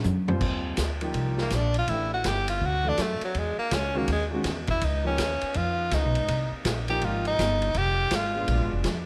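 A bright tenor saxophone carries the melody from 1.4 s, its vibrato and scooped notes sitting up front with a plate reverb in this energetic, joyful slice of big band swing, cut from a longer piece. It moves at 164 BPM in 4/4 with a swung eighth-note feel in Eb major, and the harmony travels from Ebmaj9 through Am7, D9, Emaj9, Db9 and Cm7 before reaching Fm9 and Bb7b9. A drum fill on a vintage kit opens the track, and the drums keep going with dark cymbals, a punchy kick and a gritty, saturated tone. Underneath, a pizzicato upright bass with gut strings gives a woody, thumpy pulse, while a clear concert grand piano adds polished accompaniment with deep bass. A very quiet saxophone section holds sustained chords with soft attacks and a tight, vintage blend. The sound is close and detailed, with light reverb.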